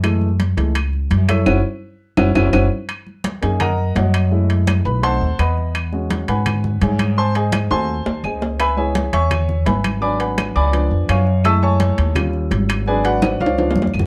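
At a driving 168 BPM in straight 4/4, this fiery, dark Afro-Cuban jazz excerpt in F# minor sets a growly, woody pizzicato upright bass up front under a natural baby grand piano soloing over rich extended chords, while thin-skinned bright congas, ringing metal-shell timbales and background claves push the groove, with a band accent at 1.5 seconds and drum fills at 2.2, 7.7 and 13.2 seconds in a moderate studio reverb.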